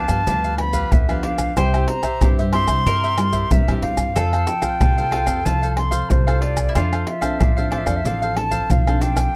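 A samba and choro passage at 93 BPM in 4/4, cut from a longer piece, with a yearning, bittersweet mood and a straight feel. A pure concert flute carries the melody between C5 and C6, its vibrato and soft attack giving the line a tender voice. Beneath it, a round, double-strung mandolin plays a second line with a slapback echo, while a crisp, mellow picked cavaquinho and a fingerpicked classical nylon-string guitar fill out the accompaniment. A woody pizzicato upright bass with steel strings sits prominently in the low end, and a percussion section of maracas, surdo, pandeiro and tamborim, played with hard hands and featuring a deep surdo, sits up front from 0.1 seconds. The harmony moves from G7 to C, then F, and settles on Dm7, and the close, detailed microphones with little reverb make every part sound intimate and present.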